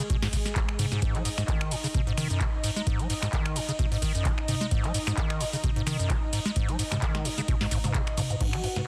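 A 130 BPM acid house groove in 4/4 with a 55% swing on the 16ths, this trippy, raw G# minor cut from a longer piece opens in the middle of a drop, a deep, tape-warm electronic kick and a booming, dry analog drum machine, with a tonal, softly clipped snare, metallic hats, handclaps, finger snaps, cabasa, toms, ride and crash cymbals, punching up front. A squelchy, hollow square-wave acid bass riff, saturated through tube drive and dub echo with a resonant filter sweep, churns beneath a lush, nasal unison sawtooth pad holding sustained chords with chorus and sidechain pumping. At 8.4 s a warbling, nostalgic lo-fi pad slips in, all inside a dense, heavily limited modern master with little reverb.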